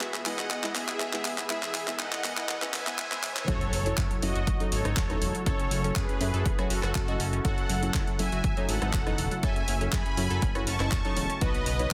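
An emotional, driving progressive house excerpt at 121 BPM in 4/4, set in F# dorian and tuned slightly below standard pitch. The opening seconds form a build-up with a drum fill from the overdriven deep house kit of handclaps, hi-hat and rim click, while filter sweeps run across the analog pluck arpeggios and the lush, very quiet unison pad, and a faint riser leads toward an impact. At 3.5 seconds the drop arrives on F#m7: a punchy, tape-warm electronic kick enters along with a fat, wave-folded analog bass that pumps with the sidechain. Above them a smooth, soft-attack supersaw carries the melody through dub echo, and dark, phased chord stabs with chorus sit in the background alongside the bright, round pluck. The harmony moves from E through F#m7 to Badd9 near the end, and the dense, heavily limited master is finished with light reverb.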